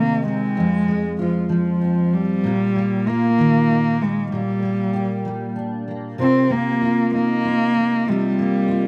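Recorded outdoors with light reverb, this short pop excerpt in 6/8 sounds intimate and melancholic, with both instruments up front. A bowed solo cello carries the aching melody, with a soft attack, expressive vibrato and portamento, and a slapback echo. Beneath it, a full-bodied, double-tracked dreadnought acoustic guitar is fingerpicked, with audible finger squeak and its own slapback echo, moving from Cm through Fm, Bbsus4 and Gm/Bb before shifting to Ebadd9/C as a new section opens at 6.2 seconds.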